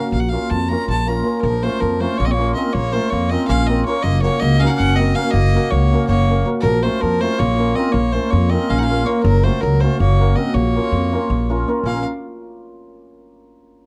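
The recording is dry and close, with the intimate feel of a 1970s studio session, and the upright bass sits up front. This is a virtuosic, bittersweet Balkan folk piece cut from a longer performance, moving briskly at 322 BPM in eighths through a straight 7/8 in B-flat harmonic minor, tuned slightly high to A4 = 441 Hz. A single bowed fiddle carries the melody from 0.0 seconds with a nasal, earthy tone and a smooth top. A hammered cimbalom rings and shimmers underneath as accompaniment, and the woody pizzicato bass anchors the low end. At 1.5 seconds a soft-attacked, vintage-sounding clarinet enters with a classical-style second line. The harmony sways between B-flat minor and G-flat, first shifting at 4.0 seconds and returning to B-flat minor for the close.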